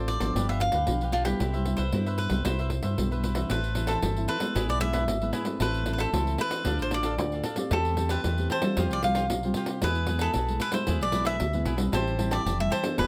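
A straight 4/4 samba and choro groove at 114 BPM, carried by a jingly, hard-handed pandeiro from 0.1 s, sets a playful, sunny mood in C major before turning to A minor at 3.5 s. An up-front, crisp, picked cavaquinho plays the melody, while a second, brighter cavaquinho and a full-bodied, thumb-plucked nylon-string guitar supply accompaniment over a dark, round fingered electric bass that sits direct and amped near the front. Light reverb and close, detailed microphones frame this passage, which is cut from a longer piece.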